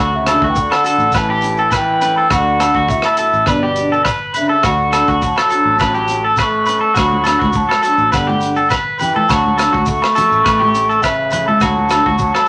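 A straight 4/4 groove drives this carefree, joyful highlife guitar band passage, cut from a longer piece, with a crunchy breakbeat kit entering at 0.3 s on hi-hat, tight kick and rim click, its gritty, saturated sound sitting mid-forward in a small room. Ringing agogo bells and a grainy shekere join at the same moment in the background, and bright, high-tuned congas with hard hands add a compressed edge from 7.1 s. Up front, a twangy, slightly broken-up electric guitar picks arpeggios, while a fingerpicked dreadnought acoustic guitar with fresh strings gives full-bodied accompaniment further back, and a dark, round, foam-muted fingered electric bass anchors the low end. The melody belongs to a pure, wooden baroque flute, tongued with vibrato, and a growling, raspy trombone in jazz style, close-miked with scooped notes, carries the second line beneath it. Moderate studio reverb gives the band a shared space as the chords cycle between D, A and G.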